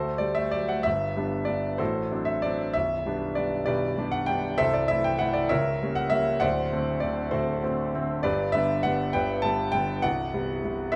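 A solo concert grand piano opens on a D chord and settles into a lyrical, gently rubato romantic character piece in a lilting 6/8, its first phrase beginning at 0.9 s on G. Captured up close in a light reverb, the instrument sounds intimate and polished, with deep bass, long sustain and audible action noise, as the harmony moves through D7, C#dim7 and back to G before resting on an open Cmaj7 color. This is a passage lifted from a longer piece, ending at 11.0 s.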